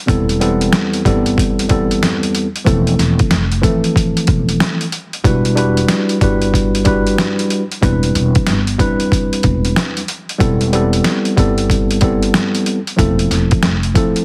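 Tough yet reflective, this boom-bap hip-hop excerpt moves at 93 BPM in 4/4 with a 16th-note swing, cut from a longer piece. A mellow tine electric piano carries the accompaniment up front, its worn, slightly out-of-tune tone passed through cassette tape and filtering as it moves through Am9/E, Fmaj7/E, Em9 and Cmaj9/E chords. Beneath it, a woody, growly upright bass plays pizzicato low in its register, stopping at 13.9 seconds. The sampler-style drum kit sits up front with a thumpy kick, a medium-tuned snare and hi-hat, pitched down and overdriven into a gritty, compressed crunch. Light digital reverb surrounds the parts, while the overall sound is heavily compressed like a radio broadcast and flecked with vinyl crackle.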